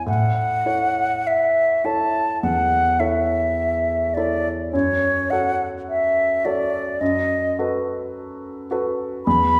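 A mellow, airy silver flute with expressive vibrato and a soft attack sings a lyrical melody up front over a warm grand piano whose deep bass and audible action noise give the accompaniment an intimate, natural presence, the two unfolding together in a serene, rubato romantic duo bathed in the wet reverb of a church or concert hall across this 9.6-second fragment of a longer piece.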